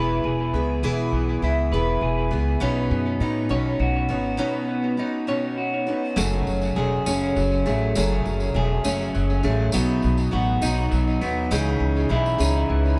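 A lilting 6/8 sway carries this short, hopeful cut of folk rock with a heartland glow, as bright picked steel-string acoustic guitar and a twangy, slightly broken-up electric riff through a small old amp sit up front over a woody pizzicato upright bass. The electric guitar's lo-fi tone trails spring reverb and dub echo, while the acoustic carries dub echo of its own, and the harmony moves from E and Badd9 toward F#madd9, B and C#madd9. At 6.2 seconds a jingly, distant tambourine joins with its own echo, adding shimmer to the jangly, echo-heavy small-room mix.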